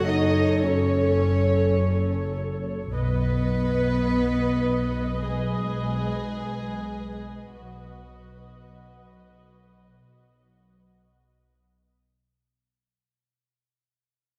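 Cinematic suspense score cut from a longer piece, ominous and uneasy, in which an intimate sul tasto violin section carries the melody over a pure, floating second violin line in the background, while a dark, woody viola section, a close chamber cello section and a soft-attack double bass section hold the lower parts and a dry, full marimba with medium mallets plays a riff over a move from F#m to B, set in a wet scoring-stage reverb as the passage fades out across its 12.2 seconds.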